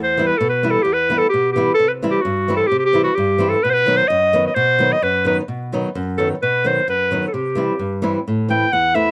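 A bright clarinet and an acoustic flamenco guitar open this restless, bittersweet Balkan folk piece together, moving at 130 BPM in a straight 2/4 in B phrygian dominant. The clarinet carries the melody between F#4 and G5 with a smooth top and a classical poise, sitting up front and a little louder than the guitar. The guitar, also close and present, supplies warm fingerpicked accompaniment from E2 to E4, with the occasional finger squeak marking its flamenco touch. The harmony moves through Em, C and B before the second section arrives at 5.5 seconds, where the clarinet takes a solo as the harmony moves on from B to C and Am until the cut at 9.1 seconds. The sound is dry and intimate, a small-room ambience that recalls a close 1970s studio recording.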